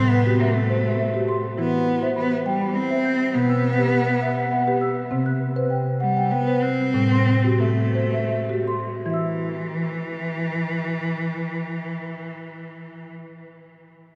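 A woody, dark marimba plays arpeggios in triple metre alongside a bowed cello's clear, focused melody with vibrato and delay in this gentle, meditative world piece of tuned percussion, cut from a longer work, which slows between 5.1 and 9.1 seconds and is steeped in a vast cathedral echo with a cassette-tape character.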